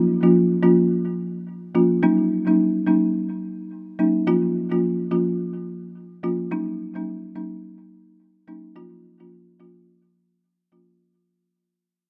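Afrobeats excerpt at 107 BPM in 4/4 with a 58% swing on the sixteenths, smooth and mellow in mood, featuring a lone folk marimba played with medium mallets on hardwood bars, its woody, rustic, boxy tone sitting dry and up front as it moves between Bbm and Ebm7 in the F3 to F4 range, tuned to A4 = 444 Hz, with light reverb around it and a fade-out running through the full 11.0 seconds.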